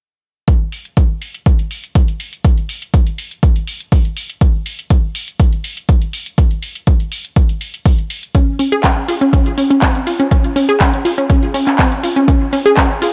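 A punchy, up-front electronic kick drives this expansive, uplifting progressive house excerpt in Db major at 122 BPM alongside a deep house kit whose dark, low-passed hats pump under sidechain while handclaps and a filter sweep on the drums run from 0.5 to 13.1 seconds. At 8.3 seconds a lush, detuned sawtooth unison pluck enters with fast-attack, decaying arpeggios between C4 and Ab4, pumping and trailed by dub echo. The drums carry a small-room character inside a digital ambience.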